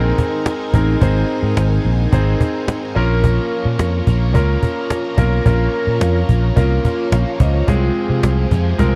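1980s-style pop with a glossy, romantic mood, this short cut from a longer piece moves over Abadd9, Bbm and Fm/C chords, with an up-front, growly fretless bass anchoring the low end and an intimate concert grand piano, its action noise audible, carrying the accompaniment. A woody cajon with faint snares enters at 0.2 seconds, while a bright, overdriven, double-tracked electric guitar with chorus sits low in the mix and a vintage, organ-like ensemble string pad with a soft attack holds evolving chords in the background. The sound is dry and close, like a 1970s-style studio recording with little reverb.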